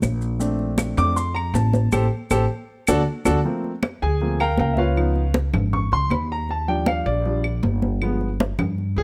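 A clear, intimate grand piano with audible action noise enters at 0.4 s to take the solo in this lively, danceable Afro-Cuban jazz cut at 158 BPM, backed by up-front pizzicato upright bass with steel strings, ringing high-tuned congas played with soft hands, woody claves in the background and grainy, mellow maracas that drop out at 3.3 s, with a band accent arriving at 1.9 s, a dry, closely miked sound, and harmony moving through chords such as Bbmaj9, Gm11 and G7b9.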